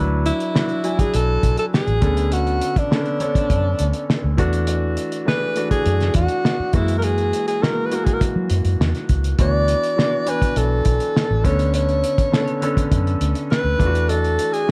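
Piano and a muted, round electric bass open this silky, cinematic slice of lush 1970s-style soul at 102 BPM in B dorian, joined at 0.3 seconds by a close-miked alto saxophone carrying a bright, vibrato-rich jazz-style lead and a cloth-damped drum kit with a fat snare and tight kick. The clear concert grand piano rings with long sustain and deep bass under chords moving from D69 through Bm9/D and E9sus4 to F#9, while the punchy, amped bass and the muffled, gritty, saturated drums sit up front. A small room and a dark production frame this cut from a longer piece.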